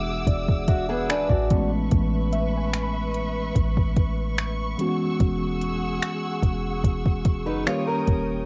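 Longing and sensual, this short contemporary R&B excerpt moves at an unhurried 73 BPM in a straight 4/4, drifting through E9, Amaj9, E69 and D#7 chords. A mellow tine electric piano carries the accompaniment and opens with a fill, while a lush, woody string section holds sustained chords that pump gently against the beat. Underneath, a clean 808-style bass lands with deep, boomy notes that decay into darkness. The produced drum kit sits up front with finger snaps, metallic hi-hats and a soft kick. A bright, boxy fingerpicked archtop guitar adds brief arpeggios with audible finger squeak, first at 0.7 seconds and again near the close, and between 2.3 and 5.2 seconds a dark, round, chorused pluck with tape echo hovers in the background. The home cassette recording is dry and intimate, lending the drums, piano, guitar, strings and pluck a tape-worn patina.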